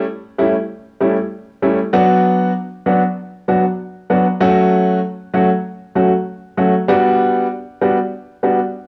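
Dancehall at 97 BPM in 4/4 with a straight feel, this short cut from a longer piece has a tough, bouncy mood in F# phrygian. A lone grand piano, warm, polished and up front, plays from the start through 8.6 seconds in the range F#3 to F#4, moving through A7, Bm, F#m and Gmaj7. Light reverb and small room ambience surround the piano, and the cassette home recording carries studio reverb.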